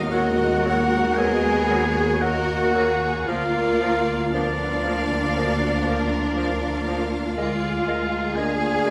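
Lush bowed cellos with a smooth top anchor this melancholic, yearning slow romantic orchestral movement at 56-61 BPM in a rubato 4/4, with focused double basses beneath them, dark, roomy French horn chords, an expressive viola section sliding with portamento, a soft-attack bassoon and a very quiet mellow clarinet, while an even, distant violin section carries the melody in the background against an intense second violin section, a clear vintage oboe and an airy silver flute, the harmony moving from Ebm to Bb/D and Bb7/D in a moderate recital hall reverb.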